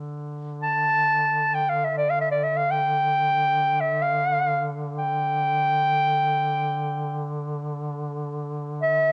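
Turkish makam ensemble music in free time, this brief fragment of a longer piece sits in D makam ussak, tuned to A4 = 440 Hz, and carries a longing, soulful mood. A close-miked duduk opens at 0.0 s, holding a drone on D3 with a folk-style vibrato and a soft, cassette-tape colour beneath the melody. From 0.6 s a clarinet carries the melody between D5 and A5, its mellow tone and smooth top shaped in a classical style and placed up front, louder than the drone. Both parts continue to the cut at 9.1 s, each heard as a solo voice within the pairing. A moderate spring reverb with a studio character surrounds the home cassette recording, lending the intimate sound a gentle sense of space.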